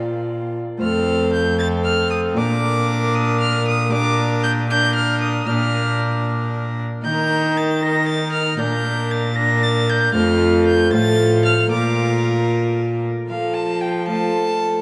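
Courtly and festive, this renaissance-style consort dance in 6/8 moves at 77 BPM in F mixolydian, with an up-front, reedy gut-string violin carrying the melody over a second violin line, a close, nasal viola with an airy bow, a rich, lightly vibrato cello bass and a ringing, fingerpicked Celtic harp in the background, all bathed in a vast, echoing cathedral reverb across this brief cut from a longer piece.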